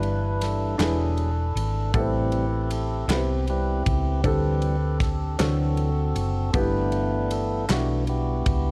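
A tonewheel organ takes the lead throughout this reverent, soulful slow gospel excerpt, its fat, clean chords played through a stopped rotary speaker with an audible key click. It moves at 52 BPM in a straight 6/8 in G major, through Em7/G, E7, Am7 and a D7sus4 to D7 before settling on G6. Underneath, a dark, mellow baby grand piano with audible action noise and short sustain comps, a round, punchy hollow-body electric bass sits up front, and an acoustic studio drum kit with a punchy kick, snare and ride supports the pulse, while a hollow group handclap joins in the background from 0.8 s, all in a small room ambience.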